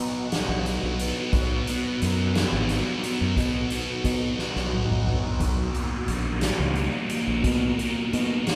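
A double-tracked, thick fuzz guitar riff with phaser sits up front in this trippy, kaleidoscopic psychedelic rock excerpt at 59 BPM in a straight 6/8, joined by a growling, bright overdriven fingered bass, a soft-mallet drum kit with a boomy kick entering at 0.3 seconds with a fill from 4.4 to 5.4 seconds, and a lush vintage string machine holding chorused sustained chords in the background as the harmony moves from B to D#madd9 at 5.4 seconds, all captured live in one room with moderate reverb.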